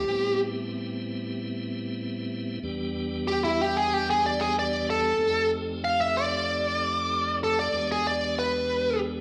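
Mournful and smoky, this short cut from a longer A minor blues moves at a straight 94 BPM in 4/4, its chords passing through Am9, Em7, F7 and E7#9 as if heard live through a club's PA. A bright, smooth overdriven electric lead guitar carries the picked melody up front, dressed in plate reverb, slapback echo and analog delay. Beneath it, a piping, scooped tonewheel organ with key click and light overdrive provides accompaniment through a slow rotary speaker, its plate reverb and slapback echo blending into the room's short club ambience.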